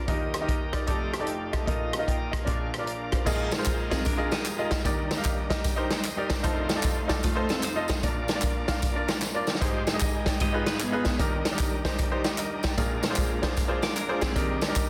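A dense, heavily limited modern master sits in a moderate recital-hall reverb, framing this soulful, uplifting uptempo gospel cut with a swung feel. Brilliant, up-front grand piano carries the accompaniment over a distant, roomy big-band drum kit with a boomy kick, crash, hi-hat, rim click and snare, while a shouting, lightly overdriven tonewheel organ holds sustained chords through a slow rotary speaker in the background and adds a fill at 5.3 seconds. A twangy, clean electric guitar offers brief second-line phrases, close, dry tambourine and group handclaps join at 3.3 seconds, and the drums take a fill at 9.2 seconds before the harmony settles on a closing Ebmaj7.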